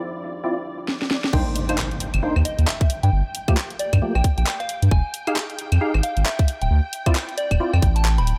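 Soulful and moody, this UK garage cut rides a swung two-step groove at 134 BPM in C minor, taken from a longer piece. It opens on a silky, warbling string machine holding sustained chords in the background, with a deep, detuned ambient pad that drops out at 0.9 s, while from 0.4 s a hollow, organ-like stab with 12-bit sampler grit and analog delay punctuates the harmony. A short drum fill leads into the drop at 1.3 s, where a tight, overdriven electronic kick and a thick, saturated sine sub bass arrive up front, alongside a background impact that lasts until 3.1 s. The garage kit adds a cracking snare, handclaps, hi-hat, rim clicks, claves and crash, all with overdrive, and a pure FM bell melody floats above with phaser and delay. Chords move from Dm9 through Cm9, Gm9 and Fm9 before returning to Dm9, and the string machine and pad both carry sidechain pumping in an echo-heavy mix with light reverb.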